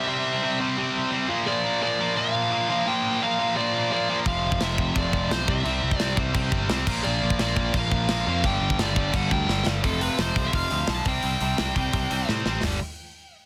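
Rowdy and upbeat, this short punk rock cut in a straight 4/4 opens with two guitars together: a bright, overdriven, double-tracked rhythm guitar churning out a low riff up front, and a dark, high-gain lead guitar carrying the melody high above it, colored by distortion and delay. At 4.3 seconds a bright, direct picked electric bass and a tight metal drum kit join, the kit sitting up front with a medium-tuned snare, crash, hi-hat, toms and a tight kick given a touch of soft clipping. The chords move from C and Bb into punchy power chords, and a drum fill at 9.5 seconds pushes the band into a new section. Another fill arrives just before the close, and the lead guitar drops out at 12.3 seconds while the riff and bass carry on a moment longer. The sound is dry and close, with a dense, heavily limited modern master that keeps the whole performance pressed hard against the listener.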